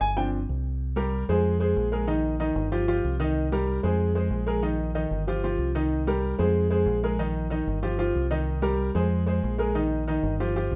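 A clear, vintage grand piano with short sustain and a dark, round, punchy fingered electric bass open this fiery, passionate salsa excerpt together at 188 BPM in C minor, both up front in a light reverb as they cycle through G7sus4, Cm7, Fm and Bbsus4 for the full 10.8 seconds.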